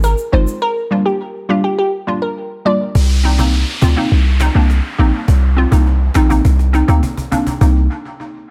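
A small room ambience and heavy dub echo shape this short, echo-soaked dancehall fragment in C minor, bouncy and hypnotic at 103 BPM in a straight 4/4. A deep, boomy 808-style bass with a sine body and fast, decaying attack sits up front from the start, under a snappy acoustic cajon with snares that carries the drums through to 7.7 seconds. A glassy, crystalline wavetable pluck sings the melody with chorus and echo until 2.8 seconds, while a distant egg shaker rings briefly in the background. From 0.3 seconds a hollow, detuned square-wave pluck with a sub octave and low-pass filtering supplies mellow, bouncy chords over Ab6, Gm7 and Cm7, trailing dub repeats. A break opens at 0.6 seconds, and the second section brings an electronic downlifter beneath a drum fill from 6.4 seconds.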